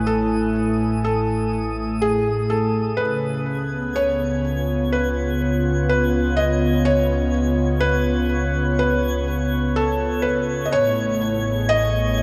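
Ambient music at 62 BPM in 4/4, melancholic and spacious, heard as a 12.2-second cut from a longer piece set in a vast, echoing cathedral-like space with a long, wet reverb. A felt-muted upright piano carries the melody up front between G#4 and D#5, its soft, intimate tone marked by audible action noise and trailed by shimmer reverb and delay. Beneath it, an analog pad holds sustained chords from A2 to G#5, a smooth, vintage, detuned sound with a warbling chorus, shimmer reverb and a filter sweep running through its whole length. A round sine sub bass sits deep between A1 and C#2, fading in across the passage, while a faint granular texture twinkles high between D#6 and G#6 with an octave-up sparkle, also fading in. The harmony moves from a rootless F#m7/A to C#7 at 3.0 seconds and settles on Amaj7 at 10.7 seconds.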